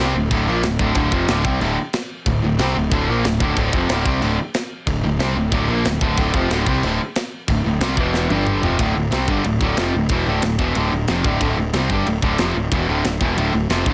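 Dark and epic, this heavy metal excerpt charges along at 184 BPM in D minor, with a bright, compressed distorted guitar riff up front, a sludgy overdriven second guitar riffing in the background, and a fuzzy picked electric bass anchoring the low end. A tight metal drum kit joins at 0.3 seconds, its bright cymbals and medium-tuned snare sitting forward in a dry studio room. A drum fill at 8.1 seconds carries a quick E5, G5, F5 turn back to D minor, opening a new section at 8.8 seconds.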